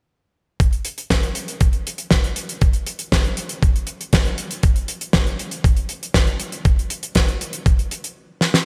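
Bittersweet and nostalgic, this short italo disco excerpt moves at 119 BPM in a straight 4/4 with only drums. A thumpy, tape-warm electronic kick sits up front with studio reverb, running from 0.6 to 7.8 seconds, beside a dry, airy, polished damped 70s kit whose hi-hat and fat snare carry studio and gated reverb. The kit plays until 8.6 seconds, with a drum fill at 8.4 seconds, all in a lightly reverberant room.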